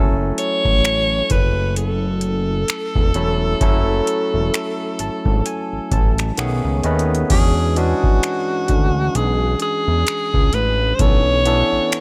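A clear, up-front alto saxophone with vibrato, subtone and scooped notes sings a jazz-style solo through delay in this moody, sensual contemporary R&B excerpt at 65 BPM with a swung 16th feel, riding over a booming analog drum machine with a deep kick, metallic hi-hats, finger snaps and crash cymbal, a fat, detuned sawtooth bass with a filter sweep, and a barky, lightly overdriven tine electric piano that plays a fill from 4.5 to 7.3 seconds as the chords move from F#m7 through B13 and E13 to Bm11, in a dry room sound.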